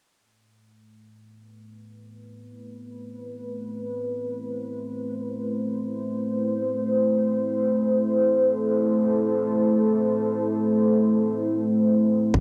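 Heard through the light reverb of a home cassette recording, this meditative, deep ambient dub excerpt in free time and A minor, tuned to A4 = 435 Hz, rests on a dark, detuned sawtooth pad with chorus and a slow attack that holds a sustained A minor chord from 2.1 s, until a round, tube-saturated analog bass, a tight, up-front electronic kick and a barely audible, breathy, wind-like noise texture all arrive together at 12.3 s as the piece cuts off.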